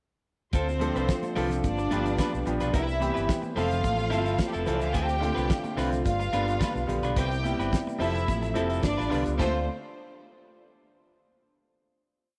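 Disco at 108 BPM in D dorian, sultry and danceable, with a damped 70s kit laying a four-on-the-floor beat under sixteenth-note hats, fat snare and dark cymbals, while an overdriven fingered bass sits up front with a punchy, syncopated line with chromatic approach notes. A slightly broken-up electric guitar chops sixteenth-note figures, a clear, intimate baby grand piano enters at 0.8 seconds with syncopated chord stabs and grace notes, and a lush string section plays fast runs into held notes over a dark, distant French horn pad. Bright, high-tuned congas and a grainy tube shaker add quiet percussion in a small room with light reverb, and the piece settles on a final Dm7 chord at 9.4 seconds.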